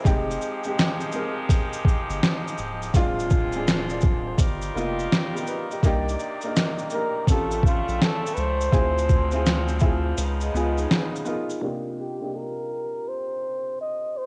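Lo-fi hip hop in C minor at 83 BPM, this melancholic, reflective excerpt from a longer piece moves with a lazy 16th-note swing and carries the tape-softened character of a home cassette recording in a light studio reverb. A woody upright piano plays accompaniment while a muted, nasal French horn section holds sustained chords, both opening together, filtered and tape-worn, moving through extended harmonies from Fm9 through Dm7b5, G7alt, Cm9, A7alt and Db9. A round, deep sub bass and a gritty, up-front sampler-style kit with a thumpy kick, fat snare, hi-hat and shaker sit beneath them, the drums compressed and re-recorded in a large room. A breathy flugelhorn enters at 6.9 seconds as the solo voice, mellow and jazz-inflected with light vibrato and scooped notes, trailed by tape echo. During the break from 10.2 seconds a dark, ringing vibraphone adds a brief second line in the background, and after 11.6 seconds only the piano and flugelhorn remain, settling on Cm11.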